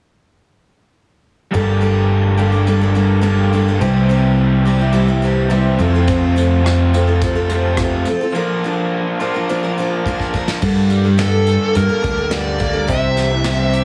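A bright, picked steel-string acoustic guitar sits up front with fresh strings and audible finger squeak, opening this reflective, wistful folk rock and heartland rock excerpt at 106 BPM in G dorian alongside a raw, double-tracked garage guitar riff colored by overdrive and spring reverb. Underneath, a picked electric bass with a warm, direct-and-amped tone holds the low end, moving through chords of Gmadd9, C, F and Bb/F. A soft brush drum kit enters at 6.1 seconds, its airy, polished studio sound carrying a punchy kick, medium-tuned snare, rim click, hi-hat and crash. After a break and a short drum fill, a new section begins at 10.6 seconds, and at 11.2 seconds a dark, smooth lead guitar steps forward with an overdriven melody colored by slapback echo. The mix is dry and heavily compressed, with a radio-like sheen and a touch of studio ambience.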